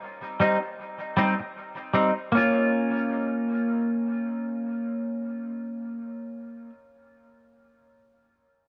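A semi-hollow electric guitar enters at 0.4 s with a bright, clean, picked accompaniment, compressed and up front, its subtle chorus and dub echo hanging in light reverb. This is a spacious, heavy reggae excerpt in Bb dorian at 78 BPM in 4/4, with a 60% swing on the sixteenths. The harmony moves from Cm to Bbm at 2.3 s, and the guitar rings on until 6.7 s inside a dark production.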